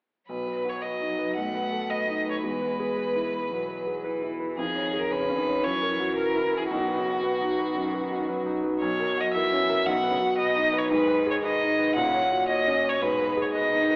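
In a straight 4/4 at 113 BPM, this lively, spirited fragment of a quick classical-period movement for piano trio in B major sets a rich, smooth violin melody with vibrato up front over a warm concert grand piano accompaniment with deep bass, while a focused bowed cello carries a second line in the background, all heard through moderate concert hall reverb and an AM radio sound.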